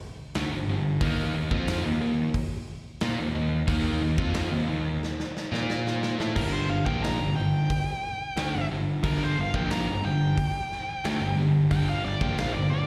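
Heard as a live gig through the venue's PA, this short cut from a longer hard rock piece carries a recital-hall ambience and a menacing, heavy mood at 90 BPM in a straight 4/4, set in G minor. A big acoustic rock drum kit with bright cymbals, a medium-tuned snare and a punchy kick drives the music, while a fuzz-laden, growly electric bass sits up front with overdrive. In the background, a scooped, high-gain guitar with distortion and slapback echo plays a riff, joined at 1.0 seconds by an overdriven semi-hollow guitar with a warm, hollow-body tone. The chords move from G5 through Eb5, Bb5 and A5, and a drum fill leads into the second section. At 6.4 seconds a high-gain lead guitar, warm and distorted with slapback and tape echo, takes a solo over G minor to the end.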